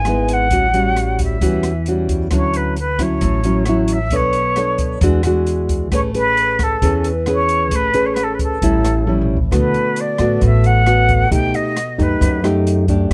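This romantic, sophisticated bossa nova excerpt moves at 133 BPM in a straight 4/4, starting in A major and shifting to D major at 9.5 s as a brief drum fill leads into the second section. An airy concert flute carries the melody with soft attacks, expressive vibrato and a warm tone, sitting up front yet with a slightly distant quality, and it drops out at 12.5 s. Close beside it, a bright, thumb-plucked nylon-string guitar in a classical style supplies the accompaniment, with audible finger squeaks. It moves through rich chords such as A6, Dmaj9, Bm9, E9 and Amaj9 before settling on D6 and B7b13. Underneath, a woody, pizzicato upright bass with steel strings holds the low end, while a smooth, dark jazz kit in a small room adds hi-hat, rim clicks, toms and a boomy kick. The sound is dry and detailed, with close microphones that bring out the texture of each acoustic instrument.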